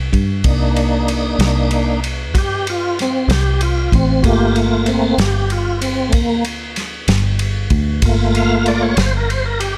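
A slow blues in 12/8 at 63 BPM, counted in dotted quarters with a straight feel, this excerpt from a longer piece sits in G minor and carries a brooding, mournful mood. The fingered electric bass starts things at 0.0 seconds with a round, foam-muted tone, direct and amped and held up front. A soul drum kit joins almost at once with kick, ride and snare. It has a dry, pumping room sound, dark cymbals, a medium-tuned snare, a tight kick and a rolled-off top. The tonewheel organ takes the solo spotlight over sustained chords that move from Cm9 to Gm9 at 4.2 seconds. Its full, lightly overdriven voice is colored by a slow rotary speaker and chorus vibrato and placed up front. A light reverb surrounds the mix.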